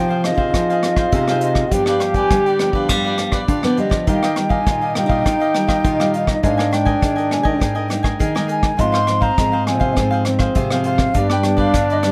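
This samba and choro piece carries a yearning, nostalgic mood in a straight four-beat feel, cut from a longer performance. A wooden flute leads the melody with an airy, woody tone, crisp attack and vibrato, while a breathy trombone plays a second line in a mellow, whispered jazz style with soft attacks, scooped notes and an intimate vibrato. Underneath, a bright, picked cavaquinho and a fingerpicked nylon-string guitar set in the background provide the accompaniment, and a second nylon-string guitar with fresh strings supplies a full-bodied, deep classical bass line, finger squeaks audible on both guitars. A vintage brush drum kit joins at 0.2 seconds, sitting up front with a tight kick, hi-hat and rim clicks in a small room, its top rolled off. The harmony moves from Fm7 and G7 through Ebadd9 and Absus2 to Fm/Ab before resting on G, all wrapped in a light reverb.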